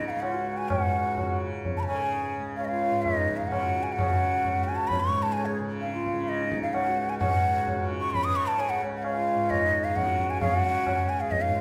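Bathed in a wet recital-hall reverb, this devotional, meditative Hindustani classical excerpt in C# major and 7/4 starts at 130 BPM and speeds up throughout, as an up-front, breathy, hollow bamboo bansuri with vibrato and tongued notes carries the melody over a reedy, breathing pedal harmonium second line, a softly plucked, buzzing, shimmering tanpura drone, and distant, low-tuned tabla with a short ring.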